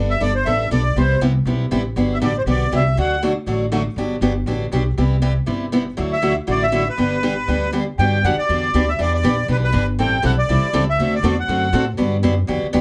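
Acoustic string swing in the jazz manouche style, lively and playful, with a bright, boxy parlour steel-string guitar picking the accompaniment, finger squeak audible, alongside a woody, thumpy pizzicato upright bass on gut strings, both up front in a small room. A reedy, sweet accordion with light tremolo tuning carries the airy melody, dropping out at 3.2 seconds and returning at 6.1 seconds. In this excerpt the harmony moves through major-seventh and added-ninth colours before a closing section that turns through Em7, Am7 and D7 back to Gmaj7.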